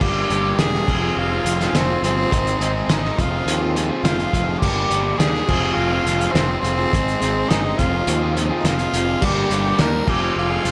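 A raspy, growling tenor saxophone carries the melody up front with vibrato and slapback echo in this brooding, driving classic rock clip, cut from a longer piece and running 10.7 seconds in straight 4/4. Beneath it, a double-tracked, bright distorted electric guitar riff with its own slapback echo and a fuzzy, overdriven picked bass cycle over Gm, Fm and Ab chords, while a cloth-damped drum kit thuds with a fat snare, tight kick and dark, muffled cymbals. A lush hall reverb and small room ambience give the mix a big arena sound.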